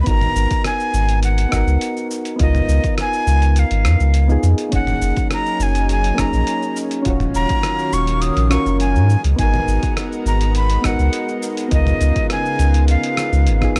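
Sunset chillout at 103 BPM in a straight 4/4, warm and relaxed, where a breathy, crisp-edged jazz flute with vibrato and analog delay carries the melody over soft, round electric-piano-like synth keys with chorus, a deep sine sub bass up front, a gritty, overdriven sampler-style kit of cabasa, hi-hat, rim click and toms layered with a deep overdriven electronic kick, and a lush, detuned, warbling unison pad that enters at 4.7 seconds, all cut from a longer piece and moving through G#m7, C#9, F#69 and D#m9 on a dry, gritty cassette-tape recording that ends on a drum fill at 13.6 seconds.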